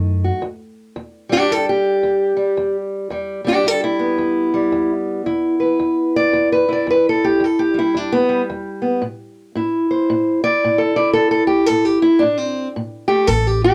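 Acoustic country blues in E minor, this smoky, brooding passage moves at 112 BPM in 4/4 with a swung eighth-note feel, cut from a longer piece. A fingerpicked steel-string parlour guitar carries the melody throughout, sitting up front with a boxy, dark voice as it ranges from E2 up to D5. The guitar takes a solo from 0.4 to 13.7 seconds, resting on E minor before shifting to an A5 chord at 9.0 seconds. A pizzicato upright bass with steel strings appears only briefly at the very start and again from 13.3 seconds, its woody tone placed close and up front. The sound is dry and intimate, like a close 1970s-style studio recording with a touch of light reverb.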